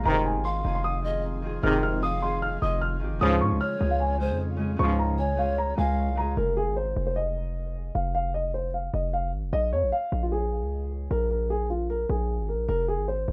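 Melancholic and menacing, this half-time hip hop excerpt in F minor moves at 152 BPM, led by a dark, boxy grand piano melody over a punchy, hard-hitting 808-style bass that runs through the whole clip. In the opening 6.4 seconds, tight classical-style brass stabs sit up front while a fingerpicked Celtic harp rings underneath, a breathy, hollow pan flute with vibrato and delay drifts in the distance as a second line, and an ethereal, detuned pad holds chords in the background. After the harp, flute and pad stop near 6.3 seconds, piano and bass carry on alone through Fm7 and Bbm7 in a dry, rough home-demo mix.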